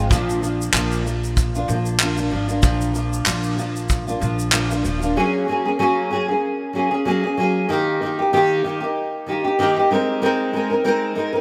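A bright, 1980s-style digital production with a moderate plate reverb frames this heartfelt, sunny acoustic pop excerpt, which carries a light swing. Up front, a double-tracked nylon-string guitar is fingerpicked in a classical manner with fresh strings, while a woody, thumpy pizzicato upright bass on gut strings, a small-room brush kit with a punchy kick and handclaps, and a grainy, close egg shaker support it. By 5.2 seconds the bass, drums and shaker have dropped away, leaving the guitar alone to move from Gbadd9 through Eb to Abadd9 until the cut at 11.4 seconds.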